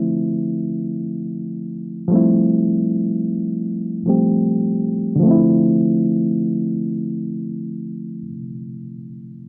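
A barky, reedy electric piano opens this reflective, nostalgic hip hop fragment, up front and lightly overdriven, its bright tone squeezed through built-in speakers, a cassette tape character and a low-pass filter. Played in free time, it moves from Dm7 to Fmaj7 at 2.1 seconds and settles back on Dm7 at 5.2 seconds, where a new section begins, before the part stops at 9.5 seconds. A wet small room reverb and a dark, warm production give the brief cut its wistful air.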